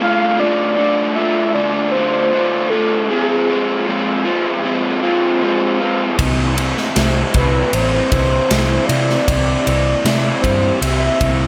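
At a slow 78 BPM in a straight 4/4, this hazy, wistful shoegaze and dream pop excerpt drifts through a Dm7 to Fm chord change before settling on C major. A raw, overdriven garage guitar carries the riff from the start, double-tracked and up front with a lo-fi, picked edge and a subtle chorus. Above it, a mellow horn-like synth lead sings the melody between Ab4 and F5, its sawtooth tone round and full-bodied, warbling with vibrato, chorus and tape echo over a soft attack and sustained notes shaped by a filter sweep. At 6.2 seconds, a vintage foam-muted fingered electric bass enters with a dark, amped low end, joined by a big acoustic rock drum kit featuring a punchy kick, medium-tuned snare and bright ride cymbal ringing in a big room. Light reverb gives the whole passage a dreamy, cushioned sheen.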